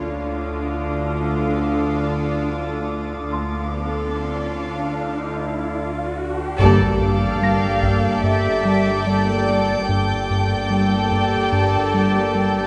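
Tense and uneasy, this slow cinematic suspense cue at 73 BPM opens on a dark Dm bed of sul tasto viola, cello and double bass sections, a high floating violin texture, a bright, worn grand piano and an evolving, detuned wavetable pad with phaser, while an electronic riser builds in the background from 3.1 seconds until, at 6.6 seconds, the harmony shifts to Gmadd9 under a hard-stick taiko accent and impact, a round analog bass riff and a second violin line, with an intimate dark violin melody entering at 7.0 seconds, all set in a wet concert-hall reverb.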